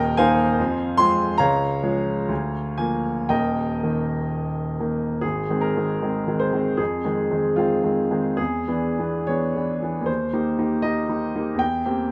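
A clear, open grand piano plays alone throughout this brief fragment of a romantic classical character piece, its long sustain ringing up front through close, detailed microphones and a light reverb. In Ab major and 2/4, the music moves with a passionate, warm rubato between 57 and 80 BPM, spanning Eb1 to C6. An opening passage circles Eb, Fm, Db and Bb7/D before a new section at 5.2 seconds, where the harmony shifts through Ab, Fm7 and E7, then settles on Eb and closes on C7/E.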